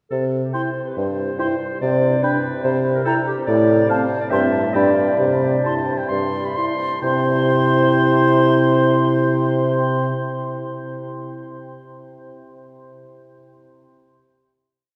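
Heard from far back in a cathedral with a long, wet reverb, this short, complete classical-period movement for wind quintet in C major moves quickly at 129-145 BPM in 4/4, with a rubato, spirited feel. The airy, hollow flute carries the melody over the oboe's smooth second line. The warm clarinet and the background French horn supply accompaniment, while the up-front bassoon holds a mellow, sustained bass on the beats. The tempo slows from 2.6 to 7.0 seconds, and then the quintet settles onto a final chord.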